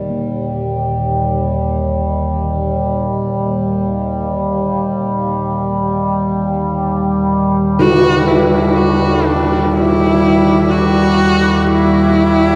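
This cavernous, unsettling dark ambient drone, heard as a fragment cut from a longer piece, floats in free time within a vast, echoing space. From the start, an overtone-sweeping drone sits up front, its sawtooth and sine layers full of moving overtones, with a slow attack, long release, chorus and its own reverb. Beneath it, a very quiet bronze singing bowl struck with a felt mallet rings out meditative arpeggios, metallic yet mellow, with slow beating and a boxy small-room colour. At 7.8 seconds a dark, close and dry tam-tam sounds briefly through a low-pass filter, as the harmony shifts to a rootless D over Eb. At the same moment a bright horsehead fiddle enters up front, a single bowed player with a husky, focused tone, vibrato and portamento, its narrow melody trailed by shimmer reverb and tape echo until the end at 12.6 seconds.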